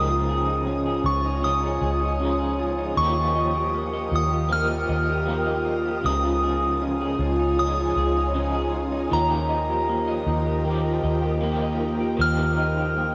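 Steeped in a lush hall reverb and recorded at home on cassette, this floating, dreamy dream pop passage is cut from a longer piece and drifts between Dbadd9 and Ebadd9 chords. A pure, gentle FM synth bell carries the high melody through chorus, shimmer reverb and analog delay, over an ethereal, slow-blooming pad with ensemble chorus and tremolo. Two slightly broken-up, twangy electric guitars fill the middle: one bright and arpeggiated through lush chorus and delay, the other tremolo-laden. Beneath them, a round, foam-muted fingered bass sits dark and up front.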